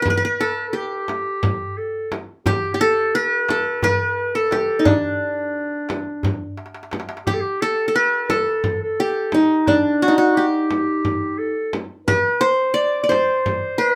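In a straight 7/8 at 174 eighth-note beats per minute, this festive Turkish makam ensemble piece moves in D makam hicaz, cut from a longer performance. The qanun carries the melody between D4 and D5, sitting up front with a bright-edged, fingerpicked sound whose triple strings give each note a shimmering fullness. A classical-style clarinet shares the same range as a second line, set back and roomy so that it glows behind the plucked lead. Beneath them, a metal-shell darbuka struck with hard hands sounds crisp, deep and close; a drum fill arrives at 6.6 s, and the darbuka drops out at 7.3 s as the opening passage comes around again. A compressed, saturated frame drum, also played with hard hands, keeps going nearly to the end, and a modest small-room ambience wraps the ensemble in a warm, intimate space.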